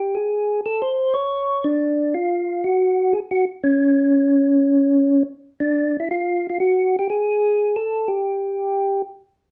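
A percussive tonewheel organ plays alone and up front from 0.0 to 9.0 s, its mellow, round tone carrying third-harmonic percussion through a slow rotary speaker across a range of C#4 to C#5. This bluesy, swinging jazz fragment, cut from a longer piece, moves at 121 BPM in 4/4 with a firm swing on the eighths, stating the same section twice, the second time beginning at 5.8 s. The dark, warm production sets the organ in a wet studio reverb, with tuning a touch high at A4 = 441 Hz.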